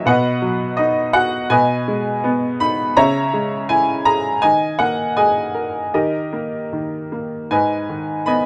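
A dark production with light reverb frames a bright, woody upright piano that sits up front, its worn, slightly detuned tone giving the classical solo a brilliant yet aged edge. The lyrical, melancholic passage moves in a rubato 4/4 at roughly 75-84 BPM in G# minor, with the piano ranging from G#2 to B5 and tuned to A4 = 439 Hz. Across its 8.5 seconds, the harmony passes from B through G#m/B and C#m to D#sus4 and D#, settling on G#m at 7.5 seconds, in this fragment of a longer piece.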